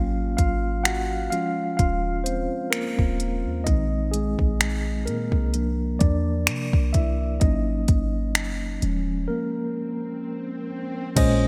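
Late-night and sensual, this contemporary R&B excerpt moves at a slow 64 BPM with a light 16th-note swing. A mellow tine electric piano sits up front and carries a solo through the whole passage over suspended ninth chords, underpinned by a deep, boomy 808-style bass with a sine-like, dark decay. A soft, electronic drum kit of kick, smooth hi-hats, finger snaps and crash is treated with gated reverb. The arrangement drops into a break at 9.3 seconds, and a quiet electronic swell enters at 9.8 seconds, all framed in bright 1980s-style digital production.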